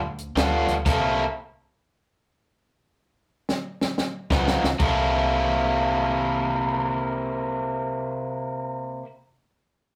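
A bright, overdriven, picked electric guitar riff sits up front in this gritty, rollicking electric blues shuffle at 122 BPM in C mixolydian, with a woody pizzicato upright bass on steel strings and a compact cocktail drum kit that is dry, with dark cymbals, a high-tuned snare and a tight kick. After a brief opening on G9 and C6, the band hits a stop at 0.9 seconds, leaving the drums alone to play a fill from 2.8 seconds. Guitar and bass return at 4.3 seconds on a Db9 chord before settling back on C6. The whole fragment, cut from a longer piece, has the rough feel of a rehearsal room, with tube saturation and a wet studio reverb.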